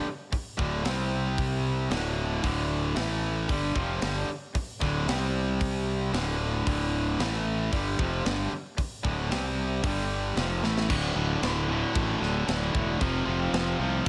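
This hard rock excerpt opens with two riffing electric guitars and a growly, fuzz-laden fingered bass all starting together, an aggressive, menacing sound in D minor at 114 BPM in a straight 4/4. The tight distorted guitar sits up front with a bright, picked edge, while the cranked stack guitar plays its overdriven riff further back, both ranging from D2 to C4 over a progression that moves through power chords on D, C and A with passing D minor chords. The bass is punchy and direct, carrying overdrive and fuzz in the low register from D1 to C2. An acoustic metal drum kit enters at 0.3 seconds with a high-tuned snare, tight kick, hi-hat and crash cymbal, its mid-forward tone rounded by a rolled-off top, and a drum fill at 10.6 seconds leads into a new section as the harmony turns through G5 and Fmaj7. At 10.9 seconds a double-tracked distorted electric guitar joins in the background, riffing between D2 and F3 as the chords shift from D5 to F5. 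A light, small-room reverb gives the band a close, studio-room feel.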